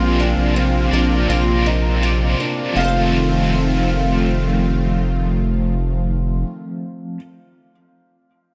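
Dreamy and floating, this dream pop fragment at 82 BPM in F mixolydian moves from Bbadd9 to F7 at 2.8 seconds, with a felt-muted upright piano carrying a soft, mellow melody in the background through dub echo, a bright, overdriven stack guitar adding tremolo and lush chorus, a smooth, detuned analog pad and a deep, round analog bass sitting up front until 6.4 seconds, a woody, shimmering twelve-string acoustic guitar picking octave-doubled arpeggios, and a barely audible, inharmonic FM synth chime ringing in at 2.8 seconds, all within an echo-heavy mix with light reverb.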